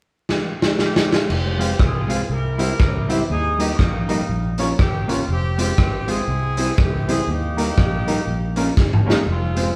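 Driving, energetic swung ska cut from a longer piece, opening with a fill on a raw garage drum kit with a punchy kick before a distant, tight horn section carries the melody, a round fingered electric bass enters at 1.3 seconds, and a dark, clean electric guitar with dub echo joins woody, slightly detuned upright piano stabs at 1.6 seconds, while large studio reverb and vinyl crackle frame the band playing live in one room.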